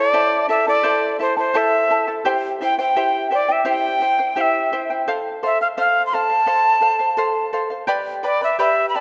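Andean folk with a melancholic, wistful air, this brief fragment of a longer piece sets a bright, airy cane quena with vibrato, a crisp attack and chiff up front over a shimmering, fingerpicked charango whose double strings ring close alongside, both bathed in the long wet bloom of a concert hall as the harmony moves from Am through C and F to G.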